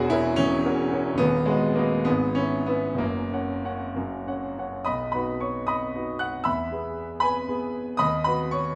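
Warm and passionate, this short romantic character piece for solo piano unfolds in B major and 6/8 at a flexible rubato pace of about 62-79 BPM, its clear concert grand sounding open and up front with a deep bass, framed by a wet recital hall reverb as the harmony moves through F#7/E, B/D#, E/G# and F# before settling on B, E and B/D# by 8.0 seconds.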